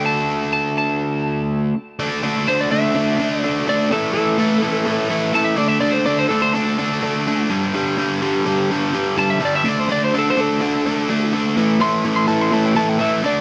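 Swaggering and driving, this straight 4/4 rock passage at 125 BPM, cut from a longer piece and tuned slightly flat to A4 = 436 Hz, sets a biting, overdriven, double-tracked rhythm guitar up front on a riff over D5, A5 and G5 power chords, while a slightly broken-up, compressed lead electric guitar with tape echo plays high melody lines and takes a solo from 2.0 seconds, all in a lightly reverberant room.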